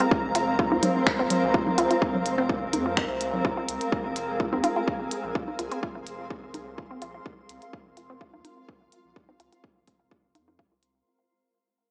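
Quirky and hypnotic, this minimal techno excerpt in F minor runs at 126 BPM over a straight 4/4 pulse, resting on a single Fsus4 chord while it fades out across its 11.1 seconds and a filter sweeps over a synth arpeggio sound, alongside the squelchy, resonant blip pluck riff with its phaser, tape echo and sidechain pumping. A punchy, overdriven kick sits up front over clicky snaps and hi-hat from a minimal electronic kit, dry tape-toned bongos and congas arriving at 0.7 seconds, and a deep, thick sub bass held low in the mix. A blurred, evolving granular cloud pad sits up front beside a mellow, flickering grainy texture, both breathing with sidechain pumping, all set in a lush hall reverb with a gritty hardware, small-speaker character.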